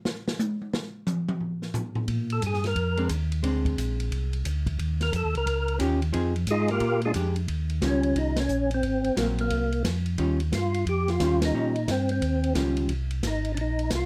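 A fat, lightly overdriven tonewheel organ with key click and a slow rotary speaker carries the bluesy melody in this soulful, swinging soul jazz organ trio clip, after a dark, boomy small-room drum kit plays alone for the first 2.1 seconds, over a round, mellow organ bass line with chorus vibrato and clean, picked hollow-body electric guitar accompaniment, with band accents landing at 8.3 and 11.4 seconds.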